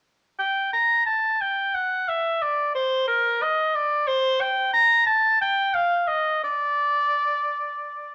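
In a 3/4 at 89 BPM, with uneven beats and free rubato, this short cut from a longer classical piece unfolds as a flowing, grave baroque-style fantasia for unaccompanied oboe. The clear oboe plays alone from 0.4 to 8.1 seconds, ranging from Bb4 to Bb5 with light vibrato. It sits up front yet sounds distant and roomy in a wet stone room reverb, all colored by worn cassette tape with a warbly pitch drift.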